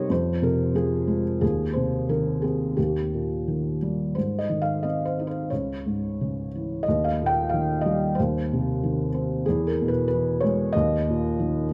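Classical solo piano in a lyrical vein, this short excerpt carries a sunny, hopeful mood at around 90 BPM in 4/4, though the beats are uneven and the pulse breathes with rubato. A felt-muted upright piano plays alone from 0.0 to 11.7 seconds, ranging from Db2 up to G5 in Ab major, with the instrument tuned slightly low to A4 = 436 Hz. Its tone is soft, mellow and vintage, thick felt rounding off every note, and it sits up front and intimate, with the mechanical action audibly clicking beneath the sound. The harmony moves from Fm through Abadd9/Eb, Eb and Ab, then darkens briefly on Dbm before returning to Eb and passing through Cm/Eb and a surprising E chord, settling on a bare Eb5 at 10.7 seconds. A moderate recital hall reverb with a 1.4-second decay surrounds the piano, and the overall production leans dark and warm, giving the smooth, hopeful playing a homely glow.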